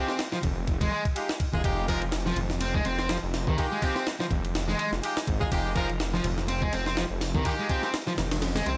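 Set in a digital ambience, this raw, energetic breakbeat cut opens with a distorted, picked electric guitar riff bathed in dub echo, alongside bright, punchy horn stabs with light vibrato that also carry dub echo and drop out at 7.9 seconds. A gritty, pitched-up sampler-style drum kit with a thumpy kick, a high-tuned snare, hi-hat and ride sits up front in a swung groove. From 0.4 seconds a thick, menacing detuned saw bass with a beating, saturated tone joins, along with very quiet acoustic congas, all over a single F minor ninth chord.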